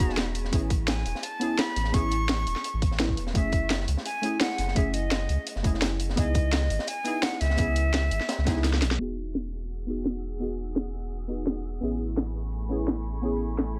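A breathy, bright concert flute carries the melody in a straight, slightly unsteady tone with tongued notes and a touch of delay, singing over this dreamy, lush liquid drum and bass excerpt until 8.6 seconds. Beneath it, a deep, mellow chord stab built from detuned triangle, sawtooth and sine tones moves through soft ninth chords, its fast-attack, decaying hits shaped by chorus, digital delay and a filter sweep. A round sine sub bass sits up front with a sustained low weight, while an electronic drum kit with a cracking snare and filtered hats drives the groove alongside a tight, layered electronic kick. A quieter breakbeat kit adds gritty, saturated texture from a small room, its high-tuned snare and rolled-off top keeping it dark and smooth. After a short drum fill, a thick, detuned unison sawtooth pad enters at 9.8 seconds with a slow attack, long release, chorus and sidechain pumping. 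The whole mix is dry, with a low-pass filter softening its edges.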